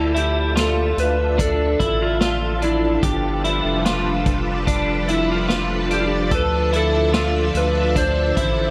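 Melancholic and hazy, this short dream pop excerpt, cut from a longer piece, drifts at 73 BPM in a straight 4/4, set in D dorian and tuned slightly sharp to A4 = 441 Hz. An electric slide guitar carries the melody, played with fingerpicks, its dark, slightly broken-up tone compressed and trailed by digital delay. Beneath it, a string machine voiced as violins holds shimmering, bright sustained chords with a slow attack and ensemble chorus, while a clean, picked electric guitar spins compressed arpeggios through chorus and delay. A round analog bass sits up front with a deep, sustained, fast-attacking tone, and a vintage acoustic drum kit enters at 0.2 seconds with a punchy kick, medium-tuned snare, hi-hat and a rolled-off top. The harmony moves from Dmadd9 to G7 at 3.0 seconds and back to Dmadd9 at 6.3 seconds, all wrapped in light reverb over a faint mains hum.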